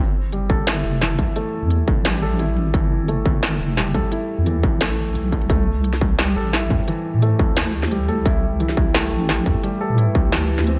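A deep, wobbling soft bass with chorus anchors this dark, spacious half-time drum and bass excerpt at 174 BPM, joined from 0.3 seconds by mellow felt-muted upright piano arpeggios with dub echo and an up-front industrial kit of clanging snare and crisp hats, driven by an overdriven, distorted electronic kick, while a moody, detuned sawtooth ambient pad with sidechain pumping slips into the background at 6.9 seconds over the C6 harmony that arrived at 5.5 seconds, all under light reverb.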